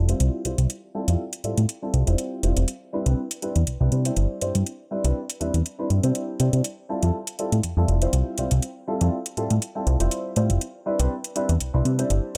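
A dry fragment of joyful, sunny filtered disco house at 121 BPM in C major, with a lightly swung 16th-note feel and a filter sweep running through its full 12.4 seconds. A punchy, funky analog bass with detuned sawtooth bite and a fast-attack, decaying filter pluck sits up front beneath a clear baby grand piano, treated with phaser and low-pass filter, playing accompaniment over Fmaj9 and Cmaj9 chords. A metallic, overdriven electronic hi-hat enters at 0.1 s, its layered tone carrying the air of a large room.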